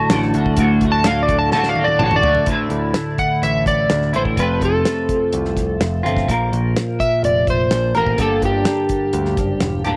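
A straight 4/4 pulse at 126 BPM from a dry, damped 70s drum kit with a tight kick and a fill from 1.5 to 2.5 seconds, alongside direct, warm picked bass, drives this trippy, hypnotic psychedelic rock fragment. A dark, slightly broken-up slide guitar with tape echo sits up front and solos over the opening bars. Beneath it runs a bright, twangy, compressed clean guitar riff, flanged and double-tracked, while a very quiet tonewheel organ through a slow rotary speaker holds chords only until 2.4 seconds. The harmony moves from D through Dsus2, F and Bbsus2 to Gm in a small room with light reverb.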